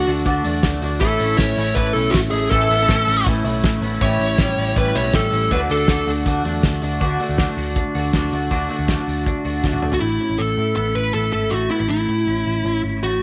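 Jangly indie pop in a youthful, breezy mood, cut from a longer piece, where an up-front fuzz lead guitar carries the melody over bright, twangy twelve-string electric arpeggios bathed in spring reverb and tape echo, a boxy, shimmering picked twelve-string acoustic, a round, foam-muted vintage bass and a cloth-damped, thuddy drum kit with a fat snare, while a jingly tambourine sits in the background until 6.9 seconds, a drum fill at 9.6 seconds closes the drums out at 10.0 seconds, and the whole sits in a moderate echo-chamber studio ambience.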